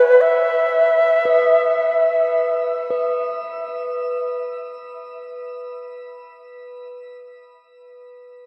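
A mellow, reedy cedar flute opens this calm, spacious excerpt of free-time meditation music, its airy wooden tone carrying vibrato, a crisp chiff on the attack and rolled-off highs as it sings between B4 and E5 through shimmer reverb and a diffuse ambient delay until 2.5 s. At 1.3 s a bronze singing bowl struck with a wooden striker begins ringing on B4, dark, smooth and metallic with slow beating, sitting quieter beneath the flute under its own shimmer reverb and sustaining alone to the close. The whole piece unfolds in a vast, echoing cathedral-like space with a long reverb tail, tuned slightly above standard pitch.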